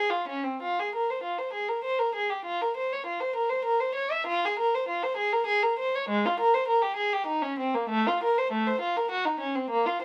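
Flowing in 3/4 at 99 BPM, the rhythm is handled with a free, rubato feel, giving this brief cut from a longer baroque-style suite movement a searching, pliant pulse. A single unaccompanied violin carries everything, bowed by one player in period style from 0.0 to 10.0 seconds. Its gut-string tone is dark and nasal, with a reedy edge that suits the F minor key and the solemn, introspective mood. The line moves between Ab3 and E5, tuned slightly below modern pitch at A4 = 438 Hz. The instrument sits up front yet carries a distant quality, framed by a light reverb.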